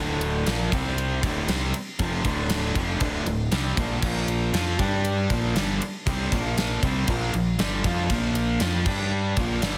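A cranked stack guitar sits up front with a bright, overdriven riff, joined by a sludgy distorted guitar further back, in this driving, aggressive hard rock excerpt that shifts from D minor and C toward B-flat and G. A growling fingered electric bass adds punchy, overdriven weight beneath them, while a gated 80s drum kit enters at 0.2 seconds with a tight kick, a medium-tuned snare, and bright crash and ride cymbals set in an airy, polished stone room. The whole mix carries a heavily compressed, radio-style sound with light reverb and small room ambience.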